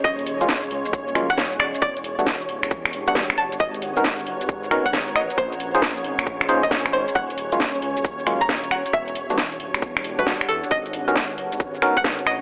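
A hollow, percussive organ stab punctuates this soulful, bouncy two-step UK garage excerpt, entering at 0.4 s with chorus on its dark, decaying tone. Above it, a twangy, string-like resonator pluck carries the melody with a bright, warbling vintage character, treated with chorus, phaser and tape echo. A silky string machine holds soft chords with an ensemble chorus, and a deep, moody ambient pad adds texture with its own reverb; both pump against the beat. At the bottom, a rumbling detuned saw bass is thickened by tube saturation, while a tight electronic kick and an up-front garage kit of cracking snare, hi-hat, shaker and finger snaps drive the swung groove at 135 BPM. The minor eleventh chords move from D#m11 through Em11, G#m11 and A#m11, and the whole mix sits in a lush hall reverb with a gritty, lo-fi hardware sound that recalls cassette tape and a telephone line.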